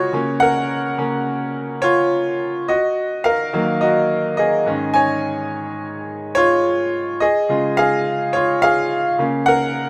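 A bright, up-front concert grand piano plays alone for the whole 9.9-second cut from a longer warm, anthemic pop piece in Db major at 106 BPM, its deep bass and natural tone moving through Gb/Db, Ebm, Absus4 and Db chords in a small room with light reverb and a rough home-demo mix.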